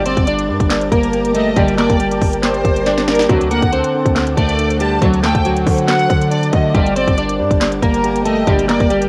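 With the character of a home cassette recording in light digital ambience, this melancholic, eerie half-time trap fragment pairs a slightly broken-up, chorused electric guitar melody and trap drums up front, with a hard-clipped kick, crisp hats and a short fill at 2.9 seconds, against a punchy, saturated 808 bass, a clean tine electric piano, a smooth violin section's tape-echoed second line, woody, distant symphonic string stabs, and an ethereal, phased pad drifting behind.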